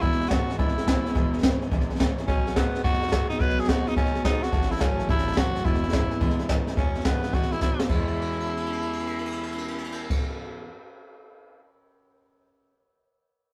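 Rockabilly at 214 BPM in 4/4 with a swing on the eighths, this upbeat, rollicking clip in E major moves from E through B and A before landing back on E. A growling tenor saxophone carries the melody as a raspy, gritty solo with vibrato and a smooth top. Behind it, an electric guitar through a small old amp plays a twangy, slightly broken-up riff with spring reverb. A picked jumbo steel-string acoustic guitar adds full-bodied picked lines, finger squeak and all, while a clear upright piano and a pizzicato upright bass with thumpy gut strings sit very quiet in the mix. Up front, a jazz kit played with brushes gives a boomy kick, a high-tuned snare and dark cymbals, with a fill at 7.6 seconds and another running from 8.0 to 10.1 seconds. The two guitars hang on until 10.7 seconds, after which the drums carry on alone to 11.6 seconds. The whole take has the rough, lightly reverberant sound of a rehearsal room.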